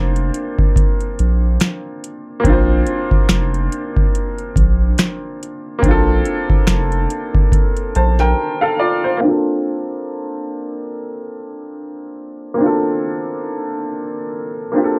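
A swung sixteenth-note groove from a booming analog drum machine, with its deep kick, crisp snare, metallic hi-hats and finger snaps, drives this nostalgic, mellow lo-fi hip hop excerpt alongside a round, soft dub sub bass, while an intimate, woody upright piano with audible action noise and a low-pass filter plays a bright accompaniment that carries on alone after drums and bass stop at 8.3 seconds, through to 15.0 seconds, all set in light reverb and a dark production.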